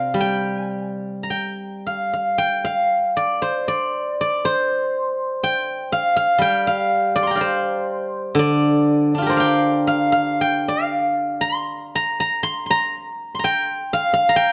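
Longing and contemplative, this short passage of Chinese traditional music features a solo steel-string zither, which plays alone from start to finish across its 14.5 seconds. The pace is slow and rubato, hovering between 51 and 64 BPM in 2/4, with the melody drawn from the G yu mode. Played with fingerpicks, the acoustic zither has a silvery, ringing tone that covers a span from C3 to C6. A brief opening phrase gives way at 2.4 seconds to a longer passage that carries the rest of the clip, which is cut from a longer piece. Close, detailed microphones place the instrument up front, with light reverb lending a touch of space around it.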